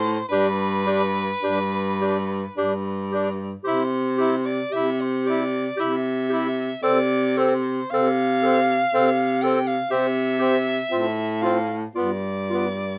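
Set in a moderate studio reverb, this serene, lyrical classical fragment for single-reed quartet moves in an unhurried, rubato three-four. An edgy, close-miked soprano saxophone with light vibrato carries the melody up front over a roomy, warm baritone saxophone bass. A present clarinet's second line and a clear tenor saxophone's accompaniment enter at 0.3 seconds, and the harmony drifts from G through C and F before resting on G7.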